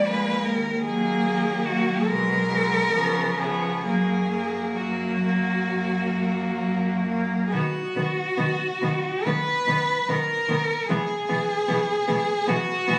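Four bowed cellos open together in a serene, lyrical classical passage cut from a longer piece, drifting between 64 and 77 BPM in a rubato 4/4: an up-front, focused lead sings the melody with vibrato, a smooth, distant second line sits beneath it, a warm, close inner voice carries the accompaniment, and a rich bass cello adds expressive portamento. The harmony settles in F# major before moving to B major at 7.5 s. Captured on a phone in the room, the ensemble sounds soaked in the lingering reverb of a recital hall.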